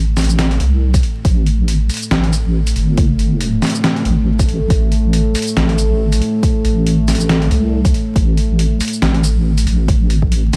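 A dark, moody analog pad holding sustained chords, colored by chorus and phaser, opens this brooding deep dubstep excerpt in A minor alongside a detuned, saturated wobble bass that sits up front. A gritty, pitched-down sampler-style kit of hi-hat, shaker and snare joins at 0.2 seconds, followed by a layered electronic kick at 0.9 seconds, both carrying a tape-like warmth. The half-time groove at 139 BPM carries a light swing, with vinyl crackle over a dry, close sound.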